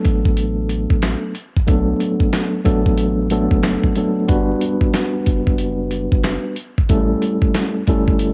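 Moody and tough, this short boom-bap hip-hop excerpt moves at 92 BPM in 4/4 with a swung 16th-note feel, set in B minor. A mellow tine electric piano sits up front, its clean tone colored by cassette tape and heard through built-in speakers, carrying the chords from Bm7 to Gmaj7 at 4.3 seconds and on to A7 at 6.9 seconds. A dusty, sampler-style drum kit of hi-hat, thumpy kick and medium-tuned snare is compressed, gritty and up front, re-recorded in a small room. Beneath them, a saturated sub bass entering at 0.1 seconds gives a deep, thick, triangle-shaped low end with a fast attack and sustained notes. The sound is dry, with the lo-fi character of a home cassette recording and a layer of vinyl crackle.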